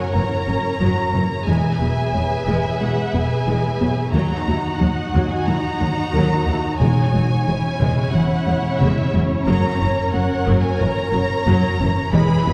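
This excerpt from a hybrid orchestral and electronic film score opens at 0.0 s with lush bowed violins in two lines: a smooth, vibrato-rich melody on top and a soft-attacked second line beneath it. Alongside them from the start, an expressive viola section sits close and glides with portamento. A very quiet felt-muted upright piano adds a mellow, intimate, vintage texture with audible action noise, while from 0.1 s a gentle, round synth pluck plays decaying arpeggios through chorus, dark and tucked into the background. Underneath, a shadowy cello section and woody double basses carry the bass in a straight 4/4 at 90 BPM. The harmony moves from Gb through E, Ebm and Dbm/Fb before returning to Gb at 9.5 s, giving the music a tense, futuristic cast. A wet scoring-stage reverb sets the whole ensemble further back in the room.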